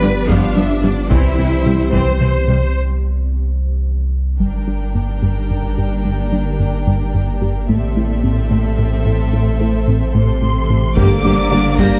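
A brooding, relentless hybrid orchestral and electronic film score in G dorian, moving at 73 BPM in a straight 6/8 and cut from a longer piece. A punchy, wave-folded analog bass riff and an up-front sine sub bass anchor a rich bowed cello section, a smooth viola section, very quiet round pluck arpeggios and an ethereal, chorused pad, while distant, intense violins carry a second line, hard-stick taiko drums sit in the background from 0.3 seconds, and a very quiet double bass section and mellow French horns sound only at the opening and the close. After a break and a drum fill, expressive, lush high violins take the melody from 4.4 seconds, and a clear, vintage trombone section joins with sustained chords at 11.0 seconds, all within a light reverb.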